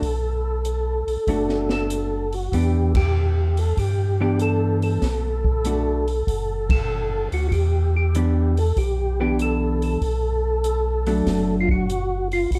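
A percussive tonewheel organ carries a mellow, round melody through a slow rotary speaker and chorus vibrato, while a second, lightly overdriven tonewheel organ with key click pipes out a scooped bass line and an airy, polished big-band drum kit swings at 96 BPM with a punchy kick, snare, hi-hat and ride. This bluesy, soulful soul jazz organ trio excerpt in B minor moves between Bm7 and Em7, with a clean, picked hollow-body jazz guitar adding compressed, dark accompaniment from 1.3 to 11.9 seconds. Band accents land at 2.8 and 6.6 seconds, all set in light reverb within a dark, warm production.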